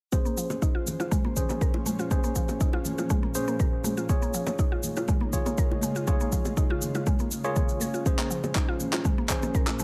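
A digital ambience surrounds this short afro house excerpt, with the deep, tape-warm electronic kick drum sitting up front and carrying the most weight in the mix. Layered electronic cabasa and handclaps, re-recorded in a small room, run alongside it from the opening moment, while round, low-tuned bongos, close and dry, and acoustic congas sit further back. A woody, full-bodied, mallet-like FM synth pluck enters at 0.3 seconds with chorused arpeggios that pump with the sidechain and repeat through a dub echo. A worn, slightly out-of-tune tine electric piano plays lightly overdriven stabs through a low-pass filter and dub echo, with a filter sweep across the whole passage. Beneath it all, an ethereal, airy pad of detuned sawtooth voices holds mellow sustained chords from 0.6 seconds, moving from Bbm9 to Db and back, giving the groove a spiritual, warm mood.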